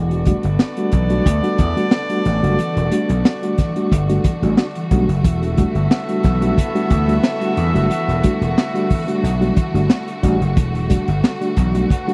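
This funky, hypnotic excerpt from a longer piece opens at once with horns, strings, electric piano and slap bass sounding together on a single Em11 chord in E minor, with a straight 90 BPM groove in 4/4. The crunchy breakbeat kit joins at 0.1 seconds and sits loudest and up front, its punchy kick, high-tuned snare and hi-hat carrying a gritty, saturated, dark character with a rolled-off top from a small room. A vintage slap bass, amped and punchy, holds the low end close beside the drums until it drops out at 11.8 seconds. Reedy electric piano stabs pulse with a fast tremolo through built-in speakers, clean and mellow in tone. Behind them, a lush bowed string section holds sustained chords with vibrato and expressive portamento, while a tight, smooth-topped horn section plays a second line in octave doubling. The whole take is dry and close, in the manner of a 1970s studio recording with little reverb.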